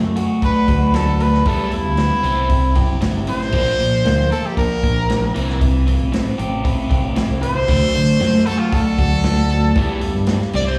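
Indie rock at 116 BPM in a straight 4/4, this short cut from a longer piece carries a wistful, jangly mood over chords moving from D through Em, C and Bb before returning through C to D and Em. A brilliant trumpet takes the solo from 0.4 seconds, forceful and pop-styled with light vibrato, sitting up front yet sounding distant and roomy through its slapback echo and digital delay. Two overdriven, picked electric guitars play riffs throughout: one bright and treated with phaser and slapback echo, the other darker with a subtle chorus and the same slapback. A growling fingered electric bass, overdriven and up front, anchors the low end, while a vintage acoustic drum kit of hi-hat, punchy kick and medium-tuned snare enters at 0.2 seconds with a natural, rolled-off top. The whole performance has the feel of a live gig heard through a venue's PA, with recital hall reverb and small room ambience around it.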